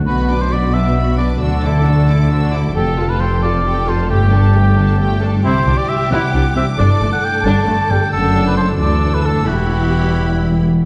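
This cinematic piece moves in 6/8 with a straight feel, and its soaring, triumphant mood unfolds over a chord sequence that opens on B minor and closes on E minor with an added ninth. A concert harp in the background ripples through thumb-plucked, ringing arpeggios from the start to 10.9 seconds. Above it, a symphonic violin section carries the high melody with smooth, even vibrato that sounds distant and lush. A clear solo oboe with a soft attack sings a second line in classical style, alongside a warm studio violin section in the background that plays its own expressive second line. Beneath them, a rich, intense viola section fills in the accompaniment, a dark cello section holds a smooth bass with light vibrato, and an up-front double bass section adds a soft-attacked, expressive low end. The whole short passage, cut from a longer piece, sits in a dark, wet scoring-stage reverb.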